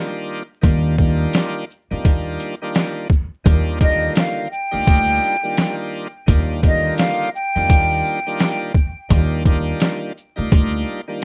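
Boom-bap hip hop at 85 BPM in 4/4 with a swung sixteenth feel, this excerpt settles on an Ebmaj7 chord in Eb major and carries a confident, nostalgic mood. A bright, shouting tonewheel organ opens the piece at 0.0 seconds, lightly overdriven and turning through a slow rotary speaker, filtered at both ends and sitting low in the mix. A sampler-style drum kit, compressed, pitched down and muffled, enters just after and stays up front with a thumpy kick, a medium-tuned snare, hi-hat and shaker. A woody, pizzicato upright bass with steel strings holds the low end in a narrow range. From 3.8 to 8.6 seconds a breathy silver concert flute takes the melody, close-miked and expressive with a straight, tongued tone, filtered and touched with delay. The dry, rough home-demo mix is dusted with vinyl crackle.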